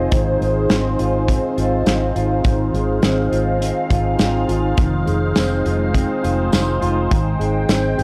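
A dry, gritty hardware recording with light small-room reverb frames this floating, ethereal dream pop excerpt at 103 BPM in Ab major, where a swirling, detuned sawtooth analog pad with phaser and chorus sustains chords through Ab6, Fm7 and Abmaj7, a mellow, clean electric guitar plays arpeggios through lush chorus and analog delay, a round, foam-muted vintage fingered bass holds the low end, and a loose indie drum kit of punchy kick, snare, hi-hat and tambourine sits up front from 0.1 s.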